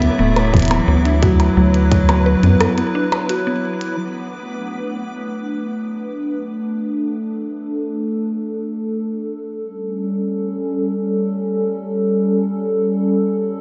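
A straight 4/4 pulse of clicky, muffled hi-hats, percussion blips and rim clicks, anchored by a tight electronic kick, drives this eerie, glitchy IDM piece. Up front, a rubbery, bouncy square bass sits beneath a dark, bowed cello carrying the melody through tape echo. A hollow, flute-like pad holds chorused chords, while a mallet-like pluck plays woody arpeggios in the background and a reversed, granular texture swells dreamily above, the mix set in a huge ambient reverb of a big, bare room; after a break at 2.6 seconds, the pad continues alone from 4.0 seconds under a filter sweep until 13.6 seconds.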